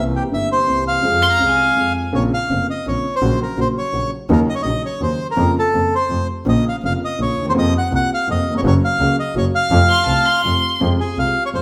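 A rubato tango in 3/4 at 166 BPM moves with a loose, breathing pulse in Bb harmonic minor, its mood melancholic and dramatic in this short cut from a longer piece. A reedy, shadowy bandoneon carries the melody up front, smooth over a worn, woody upright piano whose mellow chords ring with long sustain, a slightly detuned intimacy and audible action noise. A clear, earthy double bass, bowed by a single player, anchors the low end beneath harmonies that pass from C7 and Fm into Bbmadd9, Ebm7 and a closing turn through F back to Fm. A close, bowed violin slips in briefly around 1.2 s and again near 9.9 s, adding a soft-attacked second line full of vibrato and expressive portamento. The band plays live together in a stone room whose wet reverb wraps the ensemble in a resonant, candlelit atmosphere.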